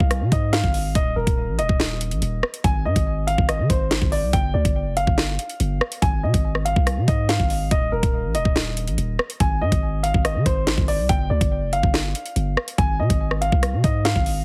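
Drill hip hop at 142 BPM in a half-time feel, ominous and tense, cut from a longer piece: a dark, intimate baby grand piano carries the melody with audible action noise and tape echo, over a deep, sine-like 808-style bass with long decaying notes and an up-front electronic drum kit of knocking kick, sharp snare, rim click and metallic hi-hats, all set in a digital ambience with a heavily compressed, radio-like sound.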